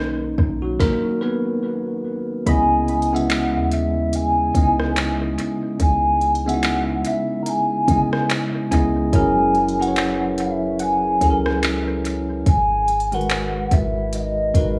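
Swung sixteenths in 4/4 carry this late-night, sensual contemporary R&B excerpt: a bell-like, bright tine electric piano with analog delay opens over a deep, boomy 808-style bass, and at 0.4 seconds a soft, tape-tinged electronic kit joins up front with a soft kick, woody snare, smooth hi-hat, rim click and handclaps. At 2.5 seconds a hollow, warbling clarinet-like synth lead takes the melody with chorus, vibrato and delay, while a gentle, round pluck sits in the background until 12.2 seconds. The echo-heavy mix has light reverb and a small-room ambience as the chords move from Bmaj9 through C#m7 and F#7 to G#m7.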